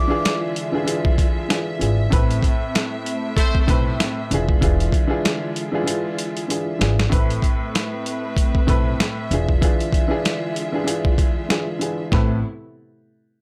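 This dry recording is a short cut from a longer boom-bap hip-hop piece, tough and dark in mood, at 96 BPM in 4/4 with swung sixteenths in A harmonic minor. A worn, slightly detuned upright piano sits up front from the first moment, carrying cassette-tape grain as the harmony moves between E7b9 and Amadd9. Beneath it, a muted string section holds veiled, con sordino chords with a smooth top. The sampler-style drum kit, compressed and pitched down, brings a gritty, thumpy kick, a medium-tuned snare and hi-hat, and plays a fill midway through. An acoustic upright bass enters at 1.8 s, pizzicato on steel strings with a woody, bright tone. A distant, roomy horn section adds a single brief stab with light vibrato and delay at 3.4 s.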